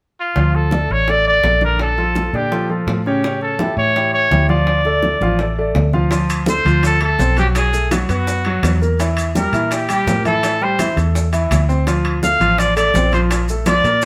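A clear, live-in-one-room sound with moderate studio reverb frames this fiery, danceable salsa cut from a longer piece, moving at 167 BPM in a straight 4/4 around D minor. A vintage-toned trumpet carries the melody up front with scooped notes, while an intimate grand piano with audible action noise supplies the accompaniment. A round, foam-muted fingered electric bass sits prominently beneath, joined in the background by bright, thin-skinned congas and low-tuned, saturated bongos. A drum fill from 5.0 to 6.1 seconds leads into the second section, where ringing metal-shell timbales and close, grainy maracas join the groove. The harmony moves through chords such as Dm7, Bbmaj7, Edim and A7sus4, giving the passage a dark, driving pull.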